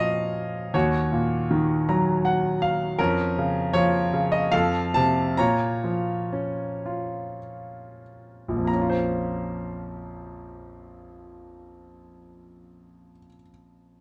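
A bright, up-front grand piano plays alone in this wistful, reflective classical excerpt in 3/4 with rubato, adding a brief fill at 1.5 seconds before slowing down from 3.0 to 8.7 seconds and settling onto a Bbmadd9 chord, its open, short-sustained tone sitting in light reverb within a dark overall production.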